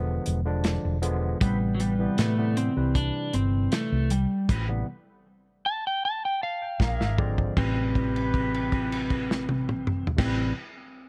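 A dark, slightly broken-up slide guitar played with fingerpicks carries the mournful melody of this soulful straight-eighth blues in A minor at 78 BPM. It enters at 1.4 seconds with a mellow, vintage horn section holding sustained chords, over a barky, overdriven tine electric piano, a round, punchy hollow-body bass and a muffled, dry drum kit with dark cymbals and a tight kick. The band stops at 4.5 seconds, the electric piano plays a fill from 6.0 seconds, a drum fill leads into a new section at 7.6 seconds, and a held note rings over an Am9 chord to the close.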